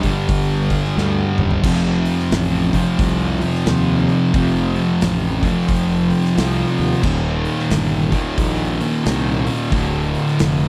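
A 89 BPM groove in 4/4 with a light swing on the eighths drives this ominous, hypnotic stoner and doom metal excerpt, cut from a longer piece. Three thick fuzz guitars carry the riff across the full 10.7 seconds: one dark and up front, another warmer and sitting in the background, and a third dark, double-tracked and very quiet beneath them. A fuzz-soaked fingered electric bass, bright, growly and overdriven, digs in low alongside the riff. A big acoustic rock kit with a punchy kick, medium-tuned snare, toms, hi-hat and bright cymbals plays throughout, marked by a short drum fill between 1.0 and 1.6 seconds. The harmony moves from G5 to F, then Eb, and settles on Dm near the end, all captured in a dry, close recording with a 1970s studio character.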